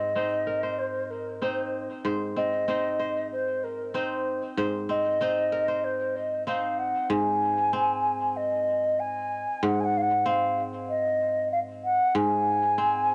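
A straight 4/4 pulse at 95 BPM carries this short folktronica fragment, cut from a longer piece, with a pastoral, delicate mood centered on Ab mixolydian and tuned slightly low to A4 = 438 Hz. A fingerpicked kora supplies ringing, crisp arpeggios from the low register up to C5, its acoustic brightness softened by a low-pass filter and trailed by tape echo. Above it, a hollow wooden flute sings the melody between Bb4 and Ab5 in a pure, mellow tone, with vibrato and tongued notes, placed up front yet carrying a distant quality through its own tape echo. Both parts play throughout, and the music moves into a new section at 7.1 seconds, resting on an Ab chord from the start. A wet studio reverb and a dark, warm production give the whole fragment an intimate, dusky glow.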